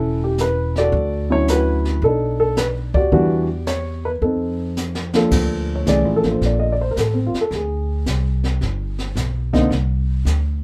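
A relaxed, warm swing at 109 BPM in 4/4 drives this jazz piano trio excerpt, with a brushed kit entering at 0.4 s: its dark cymbals, high-tuned snare and punchy kick sound distant and roomy, with a rolled-off top. An up-front upright bass plays woody, growly pizzicato lines beneath a dark baby grand piano that carries the melody with a mellow, intimate tone, short sustain and audible action noise, moving through chords such as Dmaj9, Em9 and F7. A drum fill at 4.8 s leads into a piano solo from 5.3 s over Bbmaj7, Ab and G, all in light reverb.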